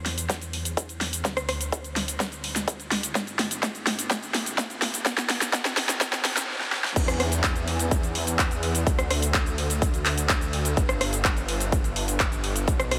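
An overdriven big-room dance drum kit with a huge snare sits up front in this anthemic, euphoric festival progressive house excerpt, its cabasa, crash cymbal, handclaps, hi-hat and rim click adding to a straight 4/4 feel. A punchy, layered electronic kick, shaped by a high-pass filter, joins at 0.3 seconds. Underneath, a thick, detuned saw bass with unison voices, chorus and sidechain pumping moves between G1 and E2, blending sawtooth, square and sine tones with a fast attack and a saturated yet mellow sustain. The opening is a build-up packed with drum fills until the drop lands at 7.0 seconds. A huge ambient reverb soaks the high-passed mix in a dreamy haze.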